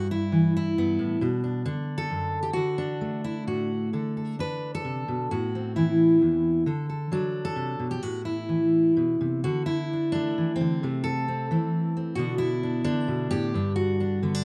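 In a loose, rubato 3/4 at 132 BPM, a lone fingerpicked steel-string acoustic guitar carries this melancholic, intimate folk fragment, cut from a longer piece and moving through Em/G, Bm, D and Am before shifting at 9.4 s toward Dsus2, Am/C, Bm and a close on G. The jumbo-bodied guitar sits up front with a warm, full-bodied tone, audible finger squeak and slapback echo, ranging from E2 to B4. Recorded outdoors, the sound is dry, with little reverb.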